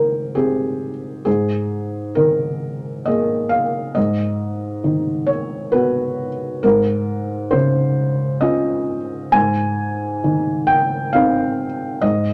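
Neoclassical minimalist piano in a rubato 3/4, peaceful and intimate, taken from a longer piece. A felt-muted upright piano plays alone for the full 12.3 seconds, its soft, mellow tone sitting up front with short sustain. The harmony drifts from Abmaj7 through Ebsus4/Ab, B/Ab and Dbmaj7/Ab before settling on Ab, all inside a moderate club reverb.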